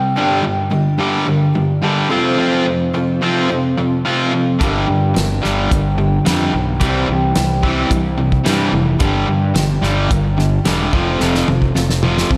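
A bright, overdriven cranked stack guitar drives the riff up front in this gritty, brooding classic rock excerpt at 109 BPM in G dorian, joined by a hollow-body overdriven semi-hollow guitar in the background over a shimmering, octave-doubled twelve-string acoustic with lush chorus and slapback echo, until a punchy fuzz bass and a dry, fat-snared 70s drum kit enter at 4.6 seconds and the drums close on a fill at 11.2 seconds, all in a big arena sound with recital hall reverb.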